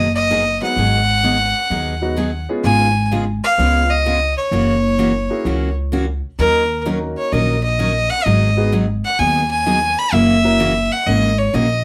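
A nasal, airy-bowed fiddle carries the melody from the start with light vibrato, joined at once by a bright, full-bodied picked acoustic guitar and a woody, thumpy pizzicato upright bass that sits up front. A smooth, vintage upright piano with long sustain slips in at 0.6 seconds to fill out the chords, dropping away at 10.6 seconds. This cheerful, playful western swing passage in 4/4 has a loping swung feel and light reverb, and is cut from a longer piece.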